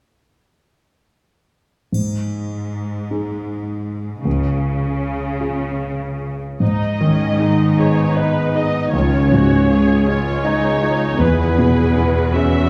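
Set back in a reverberant recital hall, this bittersweet, sorrowful cinematic orchestral excerpt in a rubato 6/8 opens with a deep-bassed concert grand piano, a brief, close and dry triangle, and a clear, focused cello section up front, before a lush, smooth viola section and a ringing, thumb-plucked harp playing arpeggios in the background join at 6.6 seconds, and a mellow, distant solo French horn takes up the melody at 7.8 seconds.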